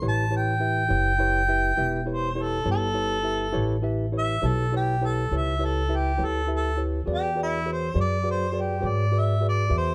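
A straight-feel 12/8 slow blues sets a laid-back, swaggering mood in this short excerpt, where a mellow harmonica solos with light vibrato and scooped notes in a jazz style, sounding roomy yet up front, over a bright, barky, clean tine electric piano and a woody, pizzicato upright bass on steel strings, all in light reverb as A7 gives way to E7 at 7.1 seconds.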